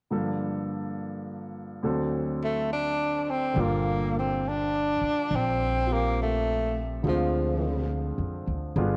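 Heard in a moderate echo chamber with softened highs, this intimate, melancholic jazz ballad in G minor moves at 69 BPM with a swung feel: a clear concert grand piano with deep, open bass accompanies from the start, a breathy tenor saxophone carries the solo melody with vibrato and subtone from 2.4 seconds, and a woody, growly pizzicato upright bass with tube saturation joins at 3.6 seconds.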